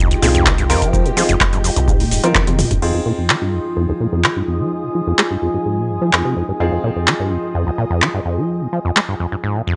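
Gritty and hypnotic, this acid house excerpt in F minor at 127 BPM opens on an Fm7 drop where a round analog bass and a deep electronic kick drum sit under a rubbery, overdriven acid bass riff with tape echo, a warbling lo-fi tape-like pad, lush string machine chords in the background and bright, worn grand piano stabs, then after a drum fill at 2.4 seconds the kick and round bass stop at 2.8 seconds as filter sweeps run on the acid bass and strings over the up-front electro drum machine's metallic hats, claps, shaker and toms, all in a dry hardware sound dulled at the top.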